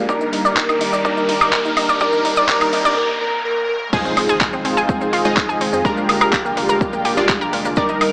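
This expansive, euphoric progressive house passage in Eb major at 125 BPM opens with a lush, detuned pad in the background, a nasal, wave-folded analog pluck playing arpeggios through chorus and tape echo, and punchy, full-bodied supersaw stabs, all pumping to the sidechain while an electronic riser builds. Filter sweeps move across the pluck and the supersaw through the build-up, a noise sweep joins, and a short break comes just before the drop at 3.9 seconds, where an impact hits and the chords move from Ebmaj7 to Fm7 and then Bb7/F. A thick, bold unison lead carries the melody in a narrow range, colored by vibrato, a moving notch, ensemble chorus, a cassette tape tone and tape echo. The overdriven, punchy electronic kick and an up-front pop kit with metallic hi-hats, handclaps, crash cymbal and woodblock drive the groove, while a grainy acoustic cabasa sits far back. From 4.1 seconds a deep, round analog bass enters low in the mix, and the whole passage sits in a reverberant recital-hall space with a thin, small-speaker character.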